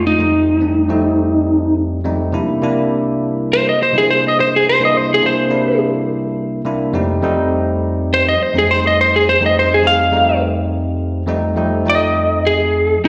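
Laid-back and swaggering, this blues cut from a longer piece swings gently as a slightly broken-up, picked lead electric guitar with slapback echo solos up front throughout its 13.1 seconds over a bell-like, bright tine electric piano treated with analog chorus and slapback echo, the chords moving from F9 to C9 and back to F9 at 7.0 seconds, all heard as a live gig through the venue's PA with a plate reverb and the reverb of a recital hall.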